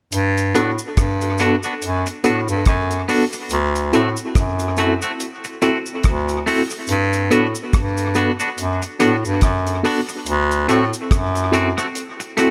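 Lovers rock reggae with a romantic, sweet mood, cut from a longer piece, where an up-front bright bass clarinet carries the low line with vibrato, soft attacks and scooped, jazz-style notes over a dark, dry reggae drum kit with a tight kick, hi-hat and rim click, a vintage cabasa in the background, a worn, slightly out-of-tune tine electric piano with medium tremolo through a combo amp, and clean, twangy picked electric guitar stabs. The drums, cabasa, piano and guitar all carry dub echo, and the whole band sways between Gmaj7 and D7 in light studio reverb.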